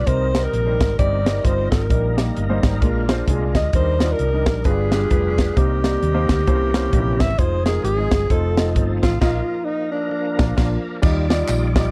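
Soulful and jubilant, this short uptempo gospel cut in Eb major swings at 132 BPM, with a breathy, close-miked alto saxophone carrying the melody up front, its scooped notes and vibrato sounding intimate and jazz-inflected. Beneath it, a gritty overdriven tonewheel organ holds thick chords through a slow rotary speaker with chorus vibrato and key click, while a baby grand piano adds long-sustaining accompaniment, a dark, round hollow-body electric bass anchors the low end, and a crisp fusion drum kit with a punchy kick and high-tuned snare drives the groove. The band hits a shared accent from 9.2 seconds as the harmony moves through Bbsus4 to Bb, and tambourine and handclaps join at 11.0 seconds for the closing Ebmaj9, all captured in a dry, close 1970s-style studio sound.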